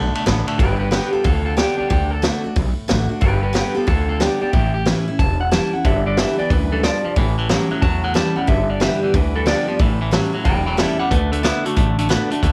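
A slightly broken-up electric guitar, played through a small old amp, carries the melody in this upbeat, rollicking rockabilly excerpt, its picked lines bathed in spring reverb and tape echo. Beneath it, a full-bodied dreadnought steel-string acoustic guitar picks out the accompaniment, with finger squeak audible. A bright, clean, compressed second electric guitar adds a twangy riff, heard briefly at the opening and then returning at 5.8 seconds to run to the end. A woody, thumpy upright bass on gut strings holds the low end, while a vintage drum kit entering at 0.2 seconds brings a punchy kick, a medium-tuned snare, hi-hat and a ride cymbal, with dark cymbals and a rolled-off top. The swung 4/4 groove drives along at 183 BPM in a small, natural-sounding room, cycling through D, G and A7 before settling back on D at 11.1 seconds.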